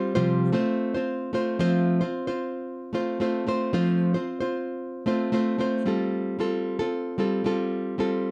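A warm, fingerpicked nylon-string guitar sits up front and carries this brief, heartfelt and easy-going pop fragment on its own at 113 BPM in F major, moving with a light sixteenth-note swing from a Csus4 into F before settling on Fadd9 at 5.9 seconds, all wrapped in light reverb and a dark production.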